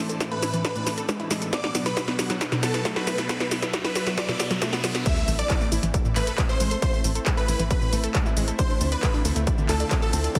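A straight 4/4 pulse at 136 BPM drives this soaring, emotional uplifting trance excerpt. Over the first 5.1 seconds, a build-up and drum fill from a punchy analog drum machine and a distorted, layered electronic kick rise beneath filter sweeps on a huge, euphoric, detuned supersaw lead with 12-bit grit and on a warbling, wave-folded unison pluck arpeggio, while a thick, slow-attack pad and a very quiet riser and sub drop fill out the sound. At 5.1 seconds the drop lands with an impact and a faint phaser-tinged second pluck line, and a tight, ring-modulated sequencer bass follows at 5.3 seconds. Sidechain pumping moves the pad, arpeggio, lead and bass, all set in a lush hall reverb with a heavily compressed radio sound, and the drop moves from Am to Dm7.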